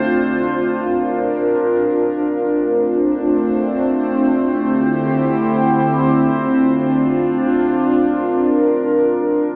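A warbly, detuned tape-like pad plays alone and up front for the full 9.6 seconds of this melancholic, hazy hip hop fragment, its slow-attack, long-release sawtooth and triangle tones softened by chorus, phaser, ring modulation and tape echo as it drifts through Dm7, Bb/D and Am7/D in free time, all soaked in a dreamy cathedral reverb.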